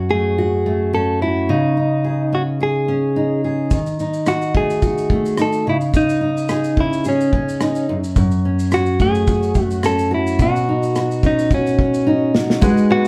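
Wistful and tender, this acoustic pop excerpt opens with a woody, fingerpicked steel-string acoustic guitar on old strings carrying the accompaniment, while a clean, compressed electric guitar, recorded direct, picks out the melody up front. A loose indie drum kit with a tight kick, rim click, shaker and medium-tuned snare enters at 3.7 seconds in a pumping small room. After a drum fill, a warm concert grand piano with audible action noise and long sustain and a round, double-strung mandolin playing arpeggios join together in the background at 12.6 seconds, all heard from further back through moderate studio reverb over chords such as F#m, C#sus2, D#dim and Badd9 with a lightly swung sixteenth-note feel.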